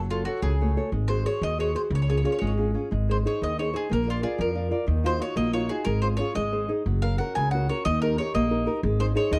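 A bowl-back mandolin carries the melody from 0.1 seconds, its picked double strings sitting up front with a touch of plate reverb that gives the tune a gentle shimmer. This is a sunny, lively Italian folk serenade in a straight 6/8 at 121 BPM, heard here as a brief fragment of a longer piece. A small-bodied nylon-string guitar, fingerpicked on fresh strings, supplies the accompaniment from the first moment. Beneath it, a woody pizzicato upright bass anchors the low end. The harmony moves through Gbm, Ab7, Db and Bb before settling toward Gb, Eb and a closing Ab. The production is dark and warm, with a moderate studio reverb that keeps all three acoustic instruments close and intimate.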